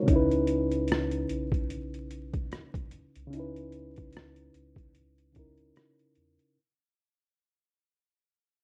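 A reedy electric piano sits up front through a low-pass filter, outlining a C#m9 chord in this reflective, nostalgic lo-fi hip hop excerpt at 74 BPM with a swung 16th-note feel, a filter sweep running across its full 6.6 seconds. Beneath it, a round, deep analog bass sustains in a low range, while a gritty, pitched-down sampler-style drum kit with a thumpy kick, hi-hat and rim click adds compressed weight. The rough home-demo mix is dry, dusted with vinyl crackle, and fades out across the whole fragment.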